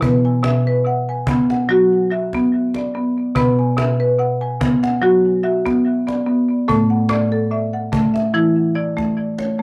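A straight, steady 4/4 pulse carries this hypnotic, meditative world piece, cut from a longer work, as a marimba played with hard mallets spins up-front arpeggios from 0.0 to 9.6 s, its padauk bars sounding woody and percussive in a boxy small room, colored by cassette tape and a tape echo. Behind it, a distant cajon played with hard hands adds acoustic, large-room thumps with faint snares, while the harmony rests on Bm before shifting to A5 at 6.7 s. The whole has the intimate feel of a home cassette recording in a damp, wet booth.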